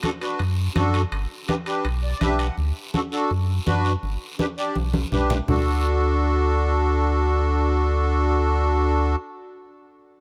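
Festive and joyful, this cumbia clip moves at a brisk 165 BPM in a straight 4/4, centered on D major and cut from a longer piece. A sweet, reedy accordion with a light tremolo tuning sits up front from the start, carrying the accompaniment over a simple D and G chord movement and dropping in a fill around 1.8 seconds. Ringing, medium-tuned congas and a raspy guiro drive the groove in a small-room sound, while metal-shelled timbales ring out in the background before dropping away at 2.6 seconds. A deep, smooth sine sub bass enters at 0.4 seconds, clean and dark with a fast attack and sustained notes, sitting prominently beneath the accordion. After a drum fill, the percussion stops at 5.6 seconds, leaving the accordion and bass to carry the closing stretch under a light reverb.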